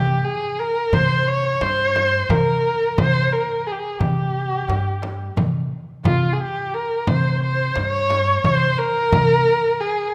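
A moderate scoring-stage reverb gives this short cut from a longer Turkish makam ensemble piece a spacious, longing and melancholic air, moving at 176 eighth-note beats per minute in 9/8. A single bowed kamancheh sings the melody up front with a rich, expressive tone full of vibrato and portamento, while a woody pizzicato upright bass supports it from the start. At 0.9 s the percussion joins: a crisp, high metal-shell darbuka sits in the background and a small, bright frame drum sounds close and dry.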